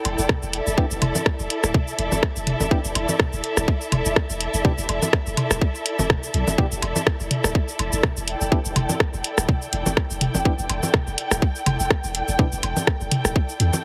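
Minimal techno with a hypnotic, quirky pull, swung on the sixteenths and resting on a single Em7 chord throughout this short cut from a longer piece. An overdriven, tight electronic kick sits up front beside a tape-warm analog drum machine of cabasa, hi-hat and rim click, while electronic woodblock, toms and congas add texture and a deep sub bass with a pitch-drop attack pumps under the sidechain. A dark, woody string section, distant and lush with vibrato, pumps along too, and a hollow, mellow organ stab with chorus and delay enters in the background at 0.8 s, all pressed into a heavily compressed radio sound with little reverb.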